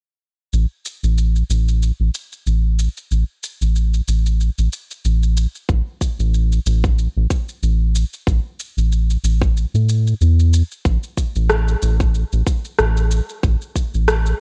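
A round, dark analog bass built from sawtooth and sine tones with ring modulation opens at 0.5 s, sitting up front and pumping under sidechain compression, alongside a produced electronic shaker and rim click in a studio reverb. This hypnotic, mystical organic downtempo piece moves at 93 BPM in 4/4 with a light 16th-note swing. A tight electronic kick arrives at 5.7 s and drops out briefly at 9.6 s before a new section begins, all coloured by a worn, warbling cassette-tape pitch drift.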